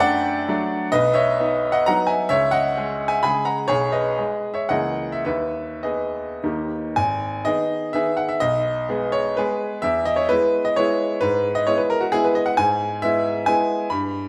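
Dotted rhythms in a rubato 3/4 drive this rustic, proud romantic classical dance in G# minor, where a brilliant, up-front baby grand piano plays solo with long sustain across a range from G#1 to B5, its tempo flexing between 99 and 141 BPM inside a wet recital hall reverb, moving from a passage that settles on D# at 6.4 seconds into a second section beginning on G#m at 7.0 seconds and closing on E/G# at 11.2 seconds in this short cut from a longer piece.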